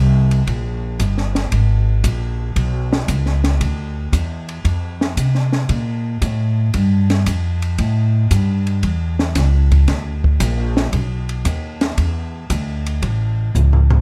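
Dry, close sound with little reverb frames this moody, swinging small-group jazz excerpt at 115 BPM in 4/4, where a woody, growly upright bass plucked on steel strings sits up front from the first second. A compact cocktail drum kit enters at 0.3 seconds with a dark, smooth small-room tone, pairing a punchy kick and high-tuned snare with hi-hat, ride cymbal and toms under a strong swing feel. The drums close the passage with a fill at 13.5 seconds as the thumpy bass carries on to the cut.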